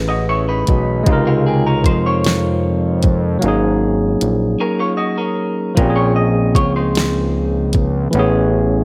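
A bright, barky tine electric piano through a combo amp accompanies this tender, slow six-eight R&B excerpt in Db major at 51 BPM, over a thick, detuned sawtooth analog bass, a smooth produced drum kit with soft kick and fat snare entering at 0.7 s, and a slightly broken-up, compressed electric guitar with spring reverb as the second line, all in a digital ambience as the chords move through Dbmaj13, Ab9sus4 and Bbm9 around a brief break at 4.6 s.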